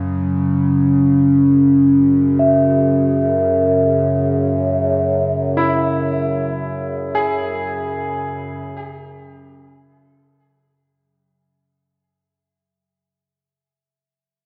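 A resonant, up-front drone of sawtooth and sine tones with ring modulation and moving overtones anchors this dark, ominous ambient excerpt from a longer piece, its slow attack and long release softened by chorus and its own reverb. A pure, ringing quartz singing bowl struck with a wooden striker enters at 2.4 s with slow, meditative beating, and a clear, open concert grand piano joins at 5.6 s with delayed arpeggios. The whole recording sits in a cavernous cathedral reverb and a worn, warbly tape sound with drifting pitch, fading out from 5.2 s.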